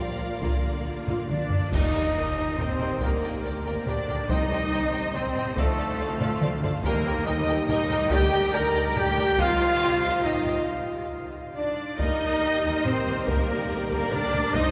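Drenched in a long cathedral reverb, this dark, dramatic excerpt of an epic orchestral film score moves at 140 BPM in 3/4, with heavy, saturated taiko drums driving beneath lush bowed violins carrying the melody and a second line. A very quiet viola section with portamento, a full string section, and rich cellos and double basses fill out the harmony and low end, while French horns sustain chords in the background and mellow trombones drop out at 9.5 seconds and return at 12.0. A roomy trumpet section adds stabs, an airy, barely audible flute adds a second line from 1.3 seconds, bright clash cymbals with concert bass drum mark the first accent, and soft-mallet timpani sound briefly on C3 as the harmony circles Bb, Eb, Gm/D and Cm before a short break.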